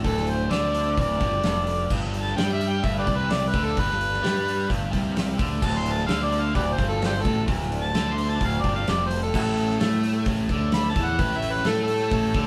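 Blues rock in the power-trio and southern rock vein, this raunchy, swaggering cut from a longer piece runs in a straight 4/4 over a D7, G7 and A7 progression. An amplified, overdriven harmonica carries the melody as a gritty, up-front solo from 0.1 seconds, with light vibrato and tongue slaps. Beneath it, a biting, double-tracked electric guitar picks a low overdriven riff, while a growly fuzz bass, fingered and punchy, sits prominently in the mix. A big acoustic drum kit drives the groove with a fat snare, punchy kick, hi-hat and crash cymbal. Far back, a very quiet tonewheel organ holds thick sustained chords through a slow rotary speaker with chorus vibrato, and the whole band sounds as if playing live together in one room with moderate studio reverb.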